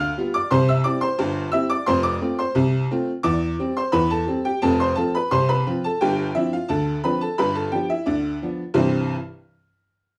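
A studio room with a noticeable reverb frames this cheerful, lively ragtime piece in C major at 87 BPM in 2/4 with a straight feel, where a metallic, jangly tack piano with a boxy, short-sustained, vintage tone plays solo and up front from 0.0 to 9.1 seconds, spanning F1 to F6 across the progression C, F, C/E, F, G7sus4, G7 and back to C as the passage turns to its next section at 8.8 seconds.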